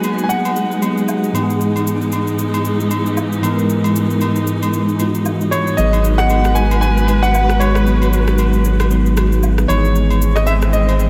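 Swung sixteenths at 115 BPM in 4/4 drive this late-night, soulful amapiano excerpt in G# minor, where an electronic shaker and rim click and acoustic agogo bells and woodblock keep time beneath a bell-like, barky tine electric piano with analog chorus and a bowed studio string section full of vibrato and portamento, both circling G#m7 and Emaj7/G#, while a clear, intimate concert grand piano with tape echo and audible action noise carries the melody in a brief opening phrase before returning at 5.5 seconds, a round, deep sine sub bass sits up front from 5.8 seconds, and a background electronic swell rises at 10.3 seconds, all bathed in a lush, dreamy hall reverb.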